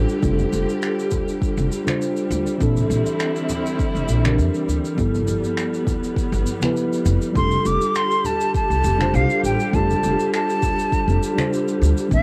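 A mellow tine electric piano, clean and up front with a tape echo trailing it, opens this relaxed, blissful sunset chillout excerpt together with a rich, bowed chamber string section holding focused sustained chords and a woody pizzicato upright bass placed close. Shaker and finger snaps with a small-room, brushed character and a deep, layered electronic kick drum, both carrying a cassette-tape colour, arrive almost at once, while bright congas struck with hard hands sit in the background. The harmony moves through F69, Bbmaj9#11 and G13, then returns to F69 at 7.4 seconds, where an airy metal jazz flute enters up front with vibrato, a soft attack and expressive lines, tinted by cassette tape and tape echo. A moderate booth ambience and the home-cassette recording give the straight 4/4 groove an intimate, lo-fi feel, and the passage is cut from a longer piece.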